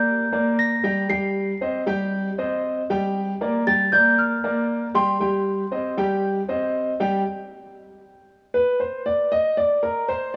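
A home cassette recording wrapped in a lush hall reverb, this short latin fragment is cut from a longer piece and carries a warm, nostalgic mood in a straight 4/4. A dark grand piano sits up front, playing arpeggios from G3 to G5 with a boxy, intimate tone, long sustain, audible action noise and a cassette tape coloring of its own. Above it, a celesta carries the melody between C6 and C7, bell-like, sweet and mellow with soft felt hammers, until it stops at 5.9 seconds. The harmony moves through Gm, Cm and Gm7 before the chords fall away at 7.3 seconds. The piano then plays alone until 10.4 seconds.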